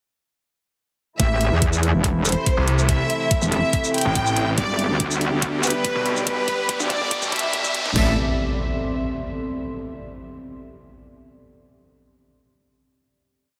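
Squeezed into a heavily compressed, radio-like sound with light reverb, this menacing, aggressive heavy wobble dubstep piece in A minor runs at 142 BPM in half-time, building from 1.2 seconds as a metallic, distorted wobble bass sits up front under a rich, lush violin section playing a repeating riff with vibrato and delay, a soft, filter-swept string section holding sustained chords in the background, and a knocking dubstep drum kit with deep snare layered with electronic hi-hat and shaker, while a deep, dark ambient pad and a growling, snarling saw bass join at 2.6 seconds, a background riser and impact mark transitions, and a drum fill drives toward the final chord at 8.0 seconds.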